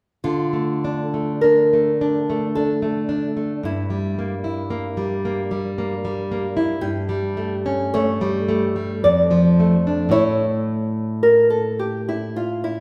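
At 0.2 seconds, two nylon-string guitars enter together in a yearning, melancholic romantic duo in D minor: one fingerpicks a small, warm melody in the upper register while the other, up front with the warm sound of fresh strings, plays a classical fingerpicked accompaniment reaching down to the low F2. The 3/4 pulse drifts with rubato at roughly 49-58 BPM, moving from Dm through Edim/G and A7/G to Dm/F before settling on A at 10.1 seconds. The guitars sit in a wet recital-hall reverb that gives this short passage, cut from a longer piece, the air of a church or concert hall.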